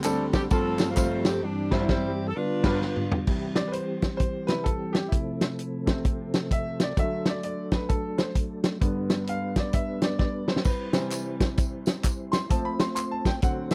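Reverent yet uplifting, this swung uptempo gospel excerpt opens with a bright, worn grand piano, a soft, flute-like tonewheel organ turning through a slow rotary speaker with chorus vibrato, a fat-snared, up-front soul drum kit and close, dry handclaps and tambourine, with a clear saxophone section entering at 0.3 seconds to state the melody, before a band accent from 1.4 seconds and a drum fill at 2.8 seconds hand over to a grand piano solo from 3.3 seconds, with the claps and tambourine returning at 10.6 seconds, all in a dry, close 1970s-style studio sound.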